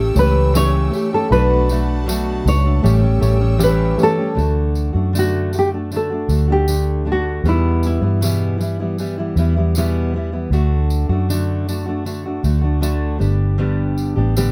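The recording is dry and close, with detailed microphones putting every part within arm's reach. This carefree, sunny acoustic pop fragment opens with a thumb-plucked nylon-string guitar carrying the melody, touched by a slapback echo, over a full-bodied fingerpicked steel-string dreadnought. A reedy electric piano, lightly overdriven with a fast tremolo, sits in the background beside a bright, intense bowed string section holding sustained chords with vibrato, and both drop out at 4.4 seconds as the harmony settles on D. A round, punchy, foam-muted electric bass stays up front throughout, while a jingly tambourine joins at 0.2 seconds. The nylon melody stops at 10.1 seconds, leaving the steel-string guitar, bass and tambourine to carry the passage toward a final G chord.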